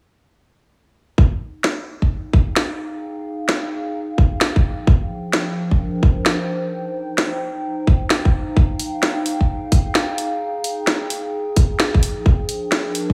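A tight, up-front electronic kick drives this bouncy, soulful two-step UK garage excerpt with swung 16ths from 1.2 seconds, joined at 1.6 seconds by a layered garage kit of cracking snare and warm hi-hats, while from 1.2 seconds a dark, nostalgic, lo-fi pad of warbling square and triangle tones swells in slowly beneath them, sidechain-pumped and bathed in chorus and its own reverb as it sustains through Fm9, Bb13/F and Eb69/F chords, the whole mix sitting in a light studio reverb.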